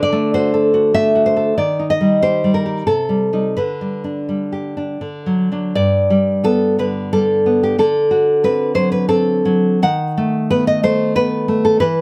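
A close, up-front nylon-string guitar sits in a moderate studio reverb, its fingerpicked classical tone warm and acoustic. This short romantic solo in G major moves in a rubato 3/4 between 77 and 100 BPM, tuned to A4 = 439 Hz, with a sunny, tender mood as the harmony passes through D7, Eb and Am7b5/C before settling on G at 5.8 seconds. From there it turns through D7 to a B7/D# at 9.8 seconds, the guitar ranging from G2 up to F#5 across its 12 seconds.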